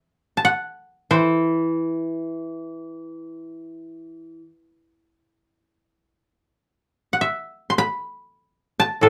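Meditative and austere, this short cut from a longer piece of Japanese chamber music unfolds in free time on two fingerpicked koto: an up-front, mellow, woody melody line in the upper register plays from the start to 3.5 seconds and returns at 7.1 seconds, while a dry, warm lower koto accompanies from 1.1 to 4.4 seconds, all set in a wet studio ambience.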